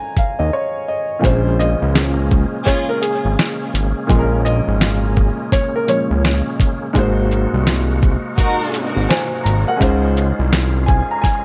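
This boom-bap hip-hop excerpt moves at 84 BPM in 4/4 with a 63% swing on the sixteenths, and its mood is tough and reflective in Bb minor, tuned to A4 = 436 Hz. A dark, mellow grand piano opens on a Dbmaj7 through a cassette-tape coloring. Sampler-style drums soon arrive, compressed and pitched down, with a thumpy kick, fat snare, hi-hat and shaker, together with a thick, detuned sawtooth bass carrying a saturated filter pluck, and both sit up front before a brief break. From 1.2 seconds the harmony settles on Bbm9, later shifting to Ab9 and back to Dbmaj7, as a reedy tonewheel organ holds chords through a fast rotary speaker with audible key click. A woody upright piano carries the melody from 1.6 to 6.4 seconds, trailed by tape echo, and a bowed string section adds short sul tasto stabs with vibrato and its own tape echo around 2.7 and 8.4 seconds. Studio reverb and vinyl crackle surround the whole track.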